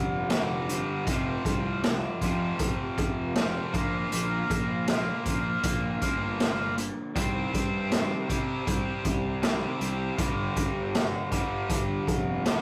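A rough rehearsal-room sound with saturation and light reverb carries this brooding, angsty excerpt of quiet-loud alternative rock in G minor at 79 BPM, where a biting, bright overdriven guitar riff sits up front over a growly fuzz-fingered bass, a very quiet, dark electric guitar picks arpeggios through a small old amp, and a gritty garage drum kit with a boomy kick, medium-tuned snare and hi-hat joins at 0.3 s as the chords move from G5 through F5, Bb and Cm back to G5.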